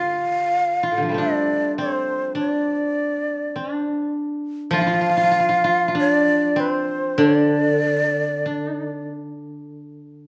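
Japanese traditional chamber music, austere and calm, moving in a rubato 2/4 at about 47-51 BPM, where an up-front, breathy, bright bamboo shakuhachi carries the melody with vibrato and a soft attack until 9.1 seconds, while a mellow, woody koto plucked with fingerpicks plays a second line throughout and a second, dry, warm koto adds low accompaniment that briefly sounds at the start and returns at 4.7 seconds, all set in a moderate recital-hall reverb in this fragment cut from a longer piece.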